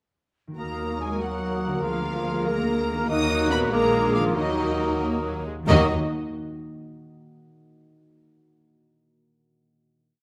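A ringing concert harp opens at 0.5 s with rolled arpeggios. A moment later the full orchestra joins in a restless, urgent Eb minor movement in 6/8 at 94 BPM, shaped by rubato, as a lush symphonic violin section carries the melody with vibrato while distant cellos double it at the octave. Beneath them, a very quiet studio violin section and viola section play tremolo chords, an airy flute section, a clear clarinet, a punchy cor anglais and a bassoon hold sustained chords in the tune's rhythm, a mellow French horn section and a dark, roomy trumpet section double the melody, and an expressive studio double bass section anchors the bass, the winds and strings stopping at 5.9 s so the harp rings on through the final chord to 7.0 s in a moderate scoring-stage reverb.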